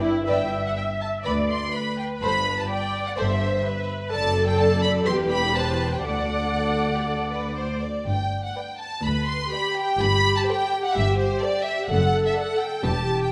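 Lively and graceful, this quick classical-period movement for string orchestra moves at 116-130 BPM in 4/4 and G major, with a rubato feel that lets the phrasing breathe. A warm, up-front violin section carries the melody from 0.3 seconds, its expressive vibrato and portamento sliding between notes high in its range. Beneath it, a second violin section adds a lush second line, while an even, smooth viola section fills in the accompaniment from the very start. The clear, focused cello section sits distant in the bass alongside a double bass section with a smooth top, together grounding the harmony. Chords move from G through Am7/G, D/F#, Em and D before the pattern returns, all bathed in moderate scoring-stage reverb in this brief passage cut from a longer piece.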